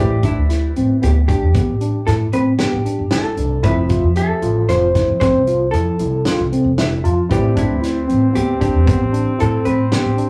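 A dark, clean hollow-body jazz guitar carries the melody in this tense, intricate progressive instrumental in 7/4 at 115 BPM in A minor, over a woody, thumpy upright bass, a roomy drum kit with a fat snare and punchy kick, arpeggios from a bright tine electric piano and a boxy grand piano in the background that adds a fill at 6.5 s, before a forceful trombone with scooped notes enters at 7.3 s, heard through a rough rehearsal-room recording with small room ambience, warm saturation and a faint mains hum.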